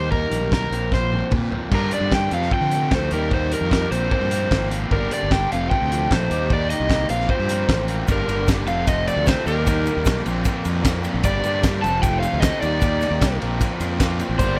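A dark, overdriven semi-hollow guitar carries the melody up front with slapback echo, backed by a second hollow-body guitar playing a riff in the background, a round, fuzzed fingered bass, and a loose acoustic drum kit with a fat snare, punchy kick and a pumping studio-room sound. At 1.7 s a bright garage guitar joins with overdrive, lush chorus and slapback echo as the harmony cycles through Eb, Bbsus2, Gm and F-based chords, and a grainy egg shaker enters at 8.1 s. This moody, cool indie rock excerpt has a straight feel and a dry sound, and it closes with a single soft, bell-like glockenspiel note played with rubber mallets at 14.4 s.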